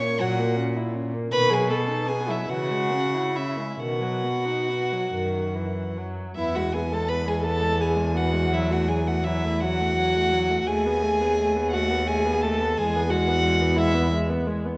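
Classical chamber music for string quartet, this slow, lyrical and tender romantic movement sways in 6/8 at roughly 45-60 BPM in E major, taking a rubato feel as it moves from a first section into a second at 6.4 seconds. A single violin carries a rich, floating melody up front, while a second violin sings a dark, intimate line with light vibrato, a viola adds woody accompaniment that sits more distant, and a warm, pure cello enters at 0.2 seconds to hold the bass up front. All four players bow sul tasto in a wet recital hall, and this fragment of a longer piece ends at 14.8 seconds on an E chord.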